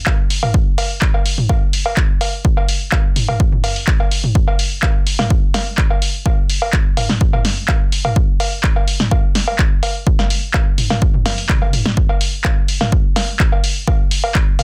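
A hypnotic, trippy house groove at 126 BPM in straight 4/4, this cut from a longer piece is built entirely on drums: an up-front, punchy analog electronic kick drives it from the opening alongside a punchy analog drum machine playing cowbell, handclaps, hi-hat, snare drum and toms. The snare, clap and hats carry a short room, while the rest sits dry in a dense, heavily limited modern master. A drum fill at 11.3 seconds breaks up the pattern before the kick drops out at 14.4 seconds.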